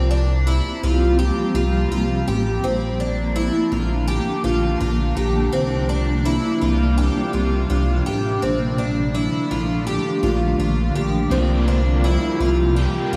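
Soaked in lush hall reverb, this blissful, floating dream pop excerpt at 83 BPM pairs a dark, glossy chorused synth bass and a shimmering, octave-doubled twelve-string acoustic guitar picking bright arpeggios through analog chorus and tape echo with a blurred granular cloud pad holding sustained chords over C7sus4 and Bbmaj7, while an overdriven semi-hollow guitar with tremolo and ensemble chorus appears only briefly at the start and returns at 11.3 seconds.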